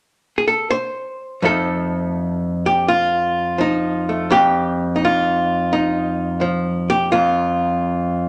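Solo jazz with a sophisticated, relaxed mood, set at 84 BPM in 4/4 with a swung, rubato feel in F mixolydian. A lone archtop guitar, miked and amplified, carries the whole performance, entering at 0.4 seconds and sounding until 8.3 seconds across a span from F2 to C5. Its electric tone is dark, clean and hollow-bodied, picked and compressed, and it sits up front in the mix. The opening moments pass with the harmony unstated before an F9 chord arrives at 1.4 seconds and colours the longer passage that follows. A moderate reverb from a large studio room surrounds the guitar, giving this brief excerpt, cut from a longer piece, a sense of space.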